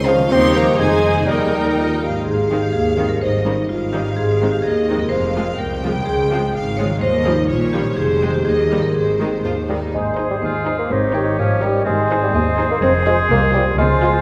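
A playful, whimsical film cue opens with a percussive hard-mallet marimba carrying the quirky, magical melody over a ringing fingerpicked concert harp's arpeggios, while a smooth, rich chamber violin section shares the tune and an intense violin section adds a second line in the background. Beneath them, bowed viola, cello and expressive double bass sections give a vibrato-laden foundation, with a very quiet tuba and an up-front, mellow bassoon briefly joining the bass and accompaniment at the start. The bassoon returns at 9.2 s and the marimba stops at 9.6 s. At 9.9 s an airy flute group and a vintage-toned clarinet bring new lines, followed by a softly sustained French horn section at 10.2 s and a present oboe at 10.4 s, all set back in a scoring stage's lush reverb.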